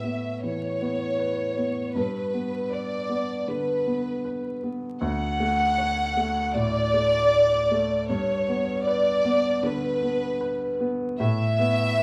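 A rubato 4/4 pulse at 78 BPM carries this fragile, melancholic neoclassical piano and strings fragment: a chamber violin section sings the melody up front with light vibrato, soft attack and a smooth, intimate sul tasto tone, over a baby grand piano whose open, long-sustaining accompaniment also sits up front, both heard throughout in a large studio room with moderate reverb and a layer of vinyl crackle as the harmony moves from Aadd9 through G and Dmaj7 to Asus2.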